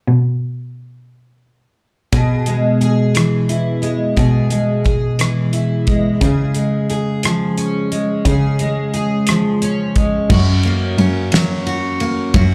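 A double-tracked, fingerpicked jumbo steel-string acoustic guitar sits up front in this romantic, heartfelt six-eight pop ballad, its full-bodied tone carrying audible finger squeak as the harmony moves from E/B to C# and arrives on F#. A dark, woody bowed cello with vibrato and portamento opens alone, then the guitar and a damped 70s drum kit join at 2.1 seconds; the dry kit brings a fat snare, tight kick, rim click, hi-hat, ride and crash with a rolled-off top. Heard as a live gig through a club PA, this fragment is cut from a longer piece.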